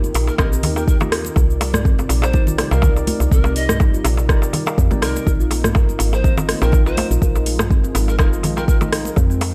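Over a lightly swung 4/4 groove at 123 BPM, an overdriven, up-front electronic kick enters at 0.4 s and joins a produced afro-pop kit of metallic hats, rim click, shaker and toms, with bright, hard-handed congas and a dry clay-shelled darbuka adding percussion, while a round, woody FM bass, background kalimba arpeggios ringing with tape echo, clean tine electric piano stabs and a mellow, chorused sawtooth pad all pump to the sidechain over Eb, Cm7 and Bbsus4, and a breathy, distant bamboo pan flute carries the melody with tape echo in this spiritual afro house excerpt.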